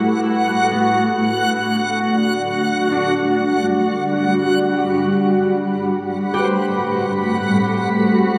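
A cloudy, detuned granular pad sits up front holding sustained chords, its blurred sine tone shaped by a filter sweep and shimmer reverb across this 8.4-second fragment of a serene, spacious ambient piece in free time and A dorian. Alongside it, a reversed, swelling texture with a dreamy triangle timbre adds a bright granular layer. Fingerpicked concert harp arpeggios ring in the background through tape echo. The harmony moves from Dadd9/A to Gmaj7 to Am9, all set in a huge, wet reverb with an 8.7-second tail.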